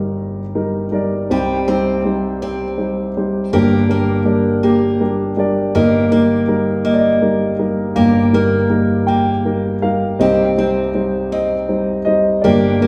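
A dark, mellow baby grand piano opens alone, carrying the melody across a span from G1 to G5, with the clatter of its action audible up close. At 1.3 seconds a picked parlour-style steel-string acoustic guitar joins with warm, boxy arpeggios between G3 and G4, sitting up front beside the piano. This folk piece moves slowly at 54 BPM in a straight 6/8, and its reflective, heartbroken mood settles over a progression that moves from Eb/G through Cm and Gm before returning to Eb/G and Cm. The piano feels intimate, yet a wet reverb with a 1.6-second tail places both instruments in a church or concert hall. The recording is cut from a longer piece and stops at 12.9 seconds.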